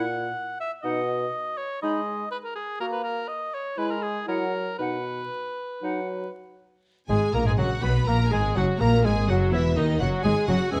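Cheerful and lively, this quick classical-period movement for symphony orchestra moves at 113-128 BPM in B major, with a rubato feel that lets the pulse breathe. It opens with the woodwinds alone: a clear solo oboe and a warm clarinet set in the background carry second lines, an airy small flute group with crisp attack sits behind them, and a mellow bassoon with light vibrato supplies the accompaniment. At 7.1 seconds the strings arrive, led by a rich chamber violin section with a smooth top taking the melody, while a distant studio violin section adds a second line and a very quiet viola section fills in underneath. Lush cellos and expressive, up-front double basses anchor the bass, and a dark, roomy French horn section holds very quiet sustained chords. The close, detailed recording sits in a moderate recital hall reverb with a layer of vinyl crackle, and the passage is cut from a longer piece, ending at 10.8 seconds.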